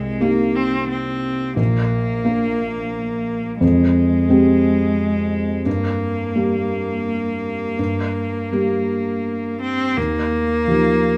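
Reflective and melancholic, this neoclassical fragment for piano and strings drifts in rubato 3/4 at roughly 81-89 BPM, tuned to A4 = 439 Hz, as a dark, thick-felted upright piano, intimate and vintage with audible action noise, carries the accompaniment through chords moving from Cm7 to Ebadd9 near 10.0 seconds, while a single clear, evenly bowed cello with light vibrato sings a second line up front in a moderate large-studio reverb.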